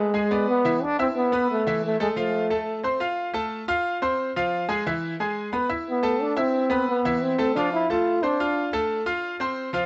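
A moderate studio room gives this recording a short, natural reverb and a rounded top end, so the sound stays close and intimate. It is a driving, passionate Latin piece in A harmonic minor at 178 BPM in a straight 4/4, cut from a longer work. A breathy trombone carries the melody up front with light vibrato, a soft attack and a whispered, pop-style delivery, and plate reverb and analog delay give it a roomy, distant halo. It plays from the start to 2.8 seconds, then returns at 5.9 seconds for a second phrase. Throughout, a bright grand piano accompanies with brilliant, present tone, long sustain, audible action noise and its own plate reverb. The harmony moves from E7 through Asus2, F and E to Amadd9 and Dm7.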